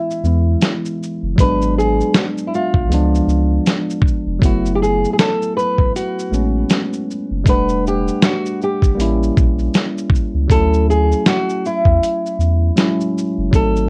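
Heard through cassette tape and a light reverb, this short cut from a longer lo-fi hip hop piece feels nostalgic and reflective, swinging gently in 4/4 over jazzy chords such as C#m9, F#m11 and Dmaj9#11. A fingerpicked nylon-string guitar carries the melody with a full-bodied classical tone and audible finger squeak, while a worn, slightly out-of-tune tine electric piano, lightly overdriven and softened by a low-pass filter, plays the accompaniment. Beneath them a gritty, compressed sampler-style drum kit with a thumpy kick, snare, hi-hat and shaker sits up front beside a deep, round analog bass that enters at 0.2 seconds.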